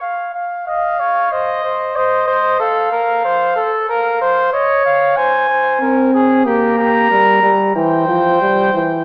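Solemn and contemplative, this fragment of a classical canzona for brass ensemble unfolds in a steady, straight 4/4 with an imitative character. A mellow trumpet opens the melody alone at 0.0 seconds, its soft attack sounding distant and roomy yet still up front. A second trumpet enters at 0.7 seconds with its own line just beneath, sharing that same remote, hall-filled quality. At 5.8 seconds a euphonium joins as a low accompaniment, its tone warm with a vintage, band-like colour. The harmony moves through a sombre chain of chords, drifting from Dbadd9 through minor and slash chords toward C/E. The whole passage sits in a wet concert hall reverb and comes through with a small-speaker sound.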